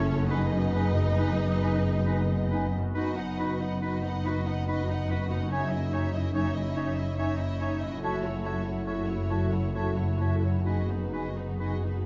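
Cinematic and full of sorrowful longing, this rubato passage in 3/4 moves at roughly 64-73 BPM in F# dorian, with a smooth, vibrato-rich violin section carrying the melody over a pedal on F# held by close, soft-attacked cellos and distant double basses, while chords pass through G#m7/F#, B/F#, C#madd9/F# and F#m7. A clear solo oboe and a second violin section in the background add second lines, a mellow flute ensemble and a distant, roomy clarinet join them at 0.3 seconds, and violas with expressive portamento fill the accompaniment. Dark, tight French horns sustain chords alongside a very quiet, ringing harp playing fingerpicked arpeggios, all set in a moderate scoring-stage reverb with a dark production.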